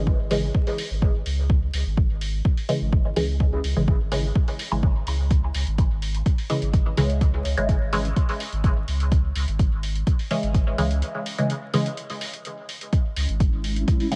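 A straight 4/4 pulse at 126 BPM drives this hypnotic, meditative dub techno excerpt in C# minor, anchored by a deep, tape-warm electronic kick drum sitting up front and a muffled, pitched-down hi-hat that sounds re-recorded in a small room. Underneath, a round sine sub bass moves between G#1 and C#2 with a fast attack and sustained body, pumping through sidechain compression. The filtered dub chord stab carries the harmony on a single C#m chord, its nasal, detuned sawtooth tone shaped by a resonant filter pluck, moving notch and phaser, with dub echo trailing each short hit. A break arrives at 11.0 seconds, and at 13.3 seconds a granular cloud pad blooms in with a slow attack, its blurred, evolving texture bathed in its own reverb. A dry analog woodblock appears in the background only at the very end, while vinyl crackle runs throughout a largely reverb-free sound, and the excerpt is cut from a longer piece.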